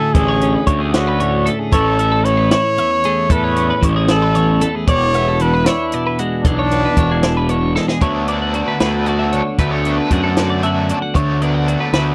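A straight 6/8 lilt at 76 BPM drives this wistful, bright math rock and midwest emo excerpt in D lydian, where a mellow, up-front trumpet with light vibrato carries the melody until 7.7 seconds over a chiming, compressed twelve-string electric guitar's chords, a softer, rounded twelve-string tracing high arpeggios, a growly fuzz bass and a punchy, high-tuned compact cocktail drum kit; a drum fill at 7.8 seconds then ushers in a biting, double-tracked overdriven guitar riff with tremolo from 8.0 seconds, set in a dry, close 1970s-style studio sound.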